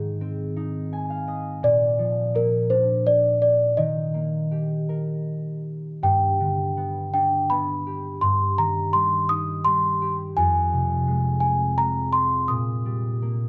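In a gently rubato triple metre, this tender, sleepy lullaby fragment sets a delicate, bell-like celesta melody with a sweet, felt-hammered, slightly vintage tone over a ringing, thumb-plucked concert harp accompaniment, both placed up front. The harp adds a brief fill from 0.6 to 1.6 seconds, and at 6.0 seconds the music moves into a new section, with chords passing from Ab and Bb through G, Fm and Eb/Bb. Close, detailed microphones catch the soft playing inside a moderate recital-hall reverb.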